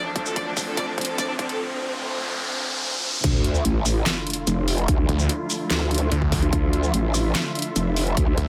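Heavy wobble dubstep in D minor at 146 BPM with a half-time feel, this chaotic, menacing piece is cut from a longer track and opens on a Dmadd9 chord. A bright, intense symphonic violin section carries the melody with a digital delay for only the first 1.6 seconds, while a dark, con sordino studio string section holds veiled, low-passed chords that pump against the sidechain throughout. A cloudy, evolving granular pad sits mellow in the background, and a riser, noise sweep and sub drop drive the build-up until the drop lands at 3.2 seconds with an impact. Punchy, overdriven electronic kicks and an up-front, deep-snared dubstep kit with crash, handclaps, hi-hat and shaker come in at 0.2 seconds, opening with a drum fill. At the drop a growling, wobbling growl bass with formant filtering and chorus takes over the low end, joined at 5.1 seconds by a snarling, distorted sawtooth bass on D2 with a resonant moving notch. 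The mix has light reverb and a digital ambience, with the bass parts loudest.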